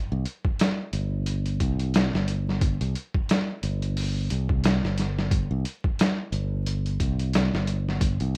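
Cinematic and hypnotic, this short trip hop excerpt with a 16th-note swing pairs a bright, punchy fingered electric bass sitting low and up front with a compressed, pitched-down sampler-style drum kit of thumpy kick, medium-tuned snare and hi-hat that sounds muffled and tape-warm as if re-recorded in a small room, all in a dry, rough home demo mix dusted with vinyl crackle.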